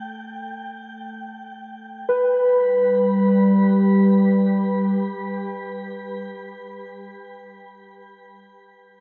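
Serene and luminous, this free-time ambient excerpt in G major opens with an airy, breathy wind-like tuned noise texture hovering on G5 over a Gsus2 chord, ending at 2.1 s as the harmony settles on G. Muted, felt-like synth keys then play intimate arpeggios around B4 with chorus, phaser and delay, joined at 2.9 s by a nasal, evolving analog drone between G3 and A3. The whole is steeped in a long shimmer reverb and the warble and pitch drift of worn cassette tape.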